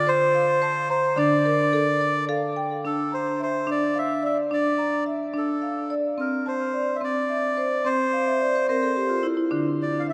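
A reedy, breathy melodica carries the melody up front, its nasal tone sitting between A4 and F5 and bathed in shimmer reverb and a diffuse ambient delay. Beneath it, a marimba played with medium hard mallets spins arpeggios from D3 to D6, its mid-forward, warm sound also up front and treated with the same shimmer reverb and ambient delay. This hypnotic, meditative world piece moves in a straight 6/8 at 72 BPM in D minor, the harmony resting on F over D before settling on D minor at 1.2 seconds and shifting to C at 6.2 seconds. The marimba adds a fill from 8.1 to 9.5 seconds, after which the chords drop away. A wet echo chamber with a long tail surrounds the pair, giving this short cut from a longer piece a spacious, trance-like calm.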